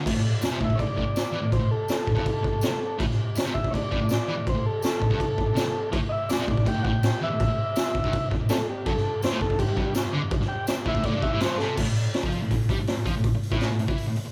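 Raw and swaggering, this excerpt of garage rock charges along at 164 BPM in a straight 4/4, centred on A minor. An up-front fuzz guitar drives the riff in a low register, double-tracked and compressed, moving from an A5 chord to G5. A small-room acoustic drum kit sits close alongside it, with a boomy kick, a high-tuned snare, hi-hat and crash, all gritty and saturated with a rolled-off top. Above them, a vintage overdriven combo organ takes a mellow solo lead with light vibrato, while a jingly tambourine sits close and dry in the background. A drum fill at 11.6 seconds marks the turn, and from 11.8 seconds the organ is gone and the band pushes on beyond the chords, with light reverb giving it the feel of a group playing live in one room.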